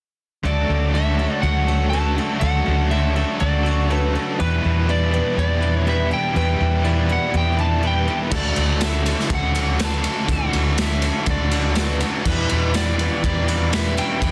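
Blissful and hazy, this shoegaze and dream pop excerpt at 122 BPM in D major sets a slightly broken-up lead guitar with digital delay over background riffs from a compressed clean electric guitar with reverse reverb, a bright double-tracked overdriven guitar with tremolo, and a thick fuzz guitar with ensemble chorus, while a shimmering octave-doubled twelve-string acoustic picks arpeggios through chorus and delay and a dark, round, foam-muted bass sits up front, until a gritty, boomy garage drum kit and a very quiet jingly tambourine join at 8.3 seconds in a small room under a dense, heavily limited master.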